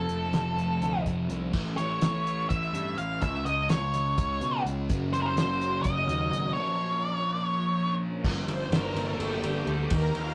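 Hypnotic and dark, this psychedelic rock fragment in 7/8 is built on a double-tracked, phaser-tinged fuzz guitar riff and an overdriven picked bass, driven by a cloth-damped, thuddy drum kit with a fat snare, tight kick and dusky cymbals sitting up front. An octave-fuzz lead guitar carries the melody until 7.9 seconds, while a lush, vintage string machine with a soft sawtooth attack and ensemble chorus pads sustained chords, dropping out briefly and returning at 4.9 seconds before taking a solo from 8.2 seconds. The whole piece has a rough rehearsal-room feel with moderate reverb.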